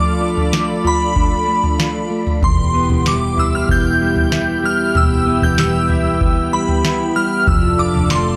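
Dream pop at 95 BPM, melancholic and ethereal in this brief cut from a longer piece, with a bright, up-front FM bell melody haloed by ensemble chorus and tape echo floating over a thick, detuned sawtooth pad, a dark, clean fingered electric guitar arpeggiating through the same chorus and echo, a booming analog drum machine with deep kick, tonal snare and toms entering at 0.4 seconds, and a round, foam-muted picked bass joining at 2.4 seconds in the background, all moving from Dm/F to Em and back in a dry, gritty hardware recording with light reverb.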